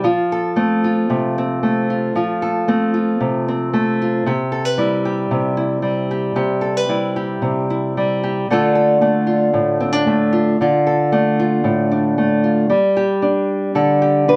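A solo nylon-string guitar opens this short folk piece, cut from a longer work, and it plays alone throughout its 14.4 seconds. The mood is nostalgic and warm, moving at 114 BPM in a straight 4/4 within C major. Fingerpicked and placed up front, the guitar has a dark, small acoustic tone, ranging from A2 to B4. The harmony drifts from F to C6 and then Dm, before a brief new section arrives at 12.7 seconds on a G5 chord. A moderate studio reverb gives the instrument a modest sense of room around it.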